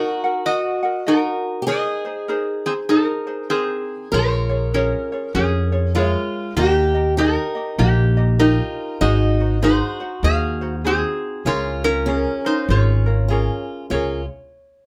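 A small room with moderate reverb gives this languid, dreamy Hawaiian piece a close, intimate sound, and it plays as a cut from a longer performance. Up front, a metal-body resonator slide guitar carries the melody with a metallic, nasal tone, its fingerpicked slide lines gliding across a fair span of register. Beneath it, a picked acoustic archtop guitar adds a bright second line, with the occasional finger squeak. A lightly fingerpicked ukulele fills in the accompaniment. At 4.1 s an upright bass joins, plucked on steel strings with a woody, growly voice that sits prominently in the mix. The gentle swing and a chord movement that settles on Db6 near the close keep the mood unhurried and drifting.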